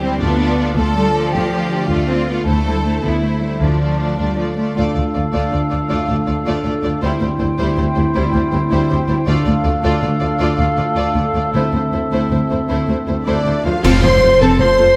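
A cinematic, heroic adventure film score in D minor, this excerpt moves at 106 BPM in 12/8, with an adventurous, swashbuckling mood. From the opening, a soft-attacked violin section carries the expressive melody over a second, more intense and distant violin line, while violas, a ringing thumb-plucked harp playing arpeggios, and rich, even cellos and double basses fill out the harmony and bass. At 4.8 seconds a dark, roomy cor anglais, a mellow clarinet in the background and an airy small flute group add second lines, as a very quiet French horn section sustains chords. Soft-mallet timpani with a round, close tone join at 9.3 seconds, followed at 11.5 seconds by a bright cymbal swell, clash cymbals and concert bass drum. A clear, vintage-toned trumpet enters with stabs at 13.3 seconds, leading into a full-band accent as the harmony lands on F. A moderate scoring-stage reverb gives the orchestra a spacious, lush setting.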